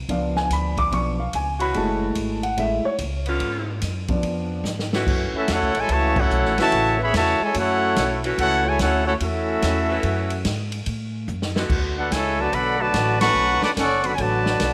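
A clear, close-miked trumpet section takes the melody at 5.4 seconds in this brassy, sultry big band swing piece, cut from a longer work, over a dark, distant trombone line, a bright saxophone section holding soft-attack sustained chords, woody pizzicato upright bass and a swinging drum kit with a boomy kick, after an intimate baby grand piano with audible action noise opens with a solo, playing until 4.6 seconds, the whole set in a moderate echo-chamber reverb.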